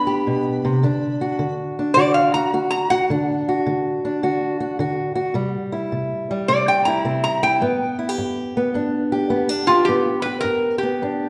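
Acoustic country blues with a swaggering, rollicking swing, this short excerpt from a longer piece puts a metallic, nasal lap resonator guitar, played with a steel bar and fingerpicks, up front on the melody with a solo through the first 9.9 seconds, over a dark, woody, boxy old ladder-braced acoustic guitar fingerpicked on old strings, all set in the wet reverb of a recital hall.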